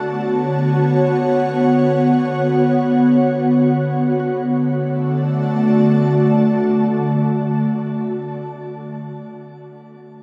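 Bathed in a huge, wet reverb, this peaceful ambient fragment in free time sets a mellow, detuned, airy pad up front holding sustained chords through ensemble chorus and shimmer reverb, moving from Bmadd9/D to D at 4.2 s and ending at 7.5 s, while a bright, ringing Celtic harp plays barely audible fingerpicked arpeggios beneath it until 7.8 s.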